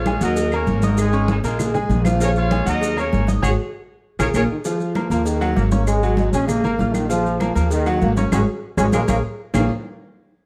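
A punchy, tight horn section opens this passionate, danceable salsa excerpt at 0.0 seconds, stating the melody in octaves with a light vibrato. Beside it, a woody, thumpy pizzicato upright bass with gut strings sits up front. A bright, worn concert grand piano carries the minor-key accompaniment, its action noise audible and its deep bass present. Damped congas, distant high-tuned cowbell and bongos, and dry woody claves stay in the background, joined by grainy maracas. At 4.5 seconds a mellow, roomy trombone section takes over the melody. Band accents and drum fills close each half of the passage, the last starting at 8.3 seconds, all in a lightly reverberant, closely miked sound.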